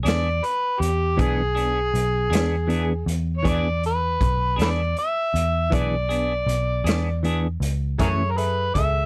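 Laid-back and swaggering, this slow blues in 12/8 at 53 BPM in E mixolydian is led by an up-front, overdriven amplified harmonica with slapback echo, light vibrato, tongue slaps and scooped notes, over a clean picked electric guitar shimmering with harmonic tremolo, a dark, round, foam-muted picked bass and a saturated small-room garage drum kit with a boomy kick and rolled-off top, while a bright, woody upright piano slips in at 8.0 s as the harmony moves from E7 to F#m7 in a dry, close mix.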